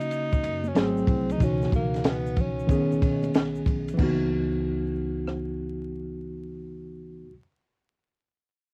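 A breathy tenor saxophone with vibrato, a soft attack and scooped notes opens this smoky, nocturnal jazz-hop fragment in C# dorian at 93 BPM with a swung 16th feel. Alongside it play a worn, slightly out-of-tune tine electric piano up front, a dry cocktail drum kit with dark cymbals, a high-tuned snare, a punchy kick and gritty 12-bit sampler texture, and bright egg shaker and congas tucked in the background. A woody pizzicato upright bass joins at 0.4 seconds. The cassette-tinged saxophone, trailed by analog delay, bows out at 3.4 seconds. The shaker and congas drop away at 4.3 seconds and the drums at 5.5 seconds, leaving the piano and bass to carry the chords through to 7.3 seconds, all under light reverb and vinyl crackle that give it a lo-fi home-cassette character.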